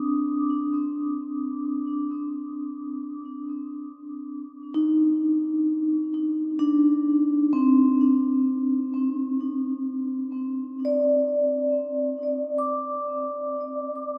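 Ambient in free time, this peaceful 14.2-second excerpt features a solo vibraphone played with soft mallets, its mellow, ringing, airy tone carrying a medium motor vibrato and a trail of delay as it moves between C4 and Eb6 over a Cmadd9 harmony. The vibraphone sits up front in a dreamy mix soaked in a wet plate reverb with a 3.6-second decay, giving the piece a calm, suspended glow.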